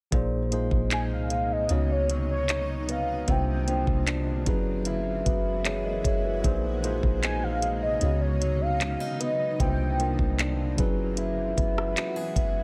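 Late-night and sensual, this contemporary R&B piece moves at an unhurried 76 BPM in a straight 4/4, cycling through lush suspended ninth chords that begin on Bb9sus4 and pass through Db9sus4, C9sus4 and Gb9sus4. A smooth, electronic drum kit sits up front with a knocking kick, metallic hi-hats, handclaps and rim clicks, while a soft 808-style bass adds deep, round, sine-like low notes that decay darkly beneath it. A mellow, clean electric piano carries the accompaniment, joined by a fingerpicked acoustic archtop guitar whose arpeggios carry audible finger squeak and a touch of delay. From 1.2 seconds a granular cloud pad drifts in, its blurred, evolving, bright haze washed in its own reverb and gently pumping with sidechain. A velvety synth lead with chorus, vibrato and delay sings the melody high above from 0.9 to 10.3 seconds, and the overall mix stays dry in this short cut from a longer piece.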